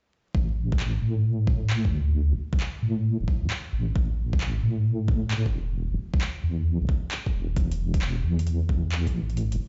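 UK garage in the two-step style, this short excerpt from a longer piece has a bouncy, late-night mood, its sixteenths pushed by a heavy swing. A deep, dark wobble bass built from detuned sawtooth and sine tones runs from 0.3 seconds to the end, sitting up front with a fast attack, sustained compressed notes and a chorus sheen. An overdriven electronic kick knocks alongside it from 0.3 seconds, layered and forward in the mix with a touch of small-room ambience. From 0.8 seconds a garage drum kit adds handclaps and metallic hi-hats, also overdriven and set lower. The whole track sounds as if played through a big sound system in a bare stone room, dulled at the top and dusted with vinyl crackle.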